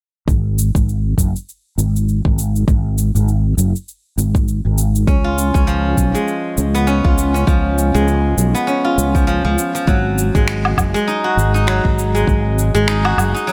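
Meditative and hypnotic, this organic downtempo excerpt moves at 100 BPM in 4/4 with a gentle 16th-note swing. A deep, layered electronic kick and produced percussion of cabasa, finger snaps and woodblock sit beneath a round, up-front fretless electric bass whose ensemble chorus and sidechain pumping give it a breathing pulse. At 5.1 seconds a silvery, ringing steel-string zither played with fingerpicks enters with tape-echoed arpeggios over C#7 and then G#5 harmony, all set in a digital ambience.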